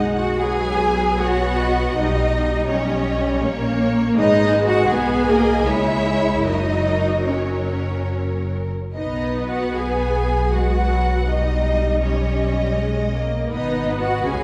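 A wet concert hall reverb surrounds this recording, which is heard from further back in the room and gives the strings a spacious, lush glow. It is a slow romantic movement for string orchestra in B major, tender and lyrical, moving in 3/4 at roughly 71-84 BPM with a free, rubato feel. One violin section carries the melody with expressive vibrato and portamento, while a second violin section adds a rich, focused line alongside it. Beneath them, the viola section supplies smooth, even accompaniment, the cello section gives a dark, woody bass that sounds distant, and the double bass section anchors the bottom with a warm tone placed up front. The harmony moves from B through D#7/B, G#m, C#m and F# before returning to B. This is a 14.4-second passage cut from a longer piece.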